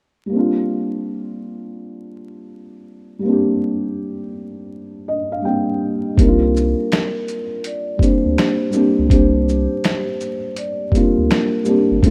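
A felt-muted upright piano, boxy and intimate under a cassette-tape haze, opens this nostalgic, reflective lo-fi hip hop fragment alone and plays a fill from 4.7 seconds, before a compressed sampler-style drum kit with a thumpy kick, snare, hi-hat, shaker and finger snaps, a thick saturated sub bass, and a ringing vibraphone struck with soft mallets carrying the melody all enter at 6.2 seconds over a swung groove, light reverb and vinyl crackle.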